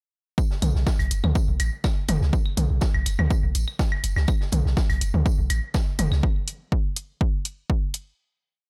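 A straight four-on-the-floor pulse at 123 BPM drives this cool, clinical minimal techno piece in B minor, with an analog electronic kick and programmed electronic hi-hat, both overdriven and up front, the kick running from 0.4 s to 7.8 s and the hi-hat from 0.6 s to the close at 8.0 s. Beneath them a deep sine sub bass with a pitch-drop attack rolls through a staccato groove with sidechain pumping, while electronic toms and claves, re-recorded in a large room, scatter clicks and blips in cross rhythm. A faint looped acoustic breakbeat from a swinging big-band kit, its hi-hat, medium-tuned snare and tambourine thinned by high-pass filtering and pumping, sits far back until 6.2 s, all within a dry, gritty hardware sound.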